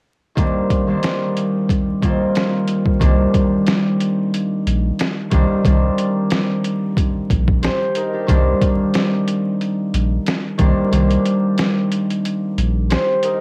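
A bright, ringing, fingerpicked concert harp, shaped by high-pass and low-pass filters and cassette tape, opens on a Cm9 chord at 0.4 seconds beside a gritty, pitched-down, sampler-style drum kit with a thumpy kick, a medium-tuned snare and hi-hat, run through overdrive and cassette tape, in this tough yet reflective boom-bap hip-hop passage in C minor at 91 BPM with a 16th-note swing, where a deep, round, soft dub sub bass joins up front at 3.0 seconds, the kick drops out at 10.9 seconds, and the whole cut from a longer piece carries the lo-fi character of a home cassette recording with vinyl crackle and digital ambience.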